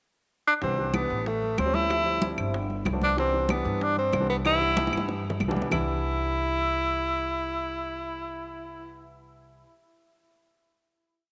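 Lively and danceable, this short, complete Afro-Cuban jazz piece opens with a breathy tenor saxophone pickup at 0.5 s before the band joins. Up front, the saxophone plays a motif-based melody of hook phrases with light vibrato and a smooth top, while the concert grand piano adds syncopated, rootless chord stabs with deep bass and short sustain. The upright bass plays a woody, thumpy pizzicato tumbao that anticipates the chords of a Cmaj9, A7alt, Dm11, G9 progression. In the background sit close congas with slaps and open strokes, round, low-tuned bongos in steady eighths with hand bell, and claves tapping a dry two-bar time line. A drum fill leads into the final chord, and the percussion stops at 5.8 s, leaving saxophone, piano and bass to carry the ending. A moderate plate reverb gives the mix a gentle sheen and a mellow top end.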